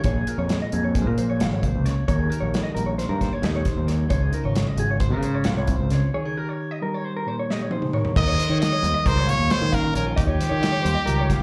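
Heard through a club's PA with light reverb, this short cut from a longer piece has the feel of a live gig. It is playful, bright math rock with a midwest emo lean, moving in an odd 9/8 metre with a straight feel. Two clean, fingered electric guitars with slapback echo carry the harmony: one, compressed and dark, plays accompaniment across a broad range, while the other, mellow in tone, spins high arpeggios. Up front, a growling fingered bass with overdrive gives a gritty, bright low end, and an acoustic drum kit with a tight kick, a medium-tuned snare and a smooth, rolled-off top covers crash, hi-hat and toms. The chords move through Bbm7, Eb and Dbmaj7 before a break at 6.1 seconds, with a drum fill at 7.5 seconds. At 8.2 seconds a brilliant, forceful trumpet enters over an Eb9 chord, taking the lead with punchy, pop-style vibrato and slapback echo.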